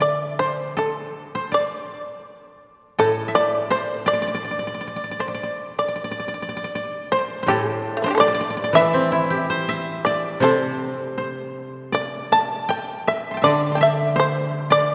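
Rubato in 2/4 at about 81 BPM, this calm, austere passage of Japanese traditional chamber music in D suspended pentatonic, tuned to A4 = 443 Hz and cut from a longer piece, puts a buzzing, percussive, plectrum-plucked fretless shamisen melody up front, while one mellow, fingerpicked koto traces a higher second line and another warm, woody koto supplies low accompaniment, all in a church-like hall with a 3.0-second reverb and moving into a new section at 6.0 s.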